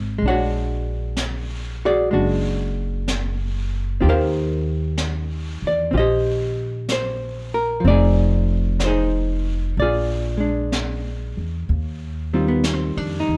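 Tender and late-night, this slow jazz ballad excerpt at 63 BPM swings gently in 4/4 as an up-front, dark, clean hollow-body archtop guitar picks chords from Bb7alt through Eb69, Fm7 and Bb7 over a woody pizzicato upright bass, while a brushed drum kit with a high-tuned snare and hi-hat sits just behind from 0.2 seconds, all bathed in a moderate large-studio reverb and a dusky, mellow production.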